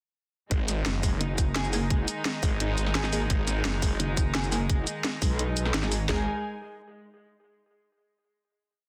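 A tight, straight 4/4 drum and bass groove at 172 BPM drives this short, dark and mechanical piece of technical drum and bass. It opens straight into the drop at 0.5 seconds and ends on a final chord from 6.1 seconds. Two layered electronic kits sit up front: one carries a broken-beat pattern of tight kick, floor tom and cracking snare, while the other adds closed and open hi-hats, shaker and extra snares. Underneath, a snarling, detuned sawtooth bass growls through chopped, distorted phrases, and from 1.2 seconds a metallic FM wobble bass with chorus answers it with modulated phrases whose wobble speed keeps changing. Behind the low end, a distant chamber string section holds reedy, gut-toned sustained chords with light vibrato, and a slightly broken-up electric guitar repeats an eight-step arpeggio through tape echo, both pumping with sidechain compression. Sparse, muted dub chord stabs, filtered and phased with lush chorus and echo, shift one shape in parallel in the background, all within light digital reverb and a dense, heavily limited master.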